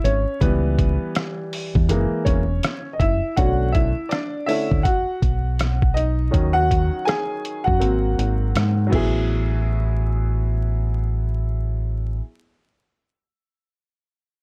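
A dark production with vinyl crackle and light reverb frames this smooth jazz-hop excerpt at 81 BPM in A major, where a clear, woody upright piano leads over a round, punchy fingered electric bass and a muffled, pitched-down sampler-style drum kit with a thumpy kick, the drums dropping out at 9.1 seconds as the piano and bass carry on to the end.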